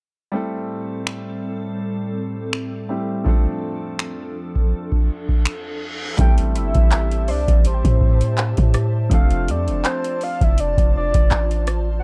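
A dark, warm production with little reverb frames this moody, longing contemporary R&B excerpt, built on a lightly swung 4/4 groove that alternates Am7 and F6. A clear concert grand piano opens the accompaniment, joined moments later by a glassy, ethereal FM pad whose ensemble chorus and built-in reverb give its sustained chords a shimmering halo. An up-front analog drum machine with a booming, deep kick, metallic hi-hats, finger snaps, handclaps and rim clicks drives the groove from about 1.1 seconds. A reverse cymbal rises into the second half at 6.2 seconds, where a boomy 808-style bass with a sine body and noise layer arrives alongside a soft, octave-layered synth lead carrying the melody with round, mellow tone, vibrato and chorus. A very quiet, gentle pluck adds a faint detuned texture in the upper register for a few seconds before the passage ends.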